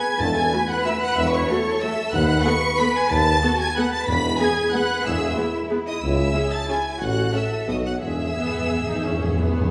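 Heard from further back in a reverberant recital hall, this elegant, festive classical passage in E major moves in a rubato 3/4 at 166-199 BPM, cut from a longer piece. A focused violin section carries the high melody with vibrato over a lush second violin line and a smooth, even viola section that enters at 0.5 seconds. Beneath them a cello section with soft attack and portamento, a distant double bass section and a mellow solo tuba form the bass, while round, soft-mallet timpani mark brief accents before a closing fill from 8.0 seconds.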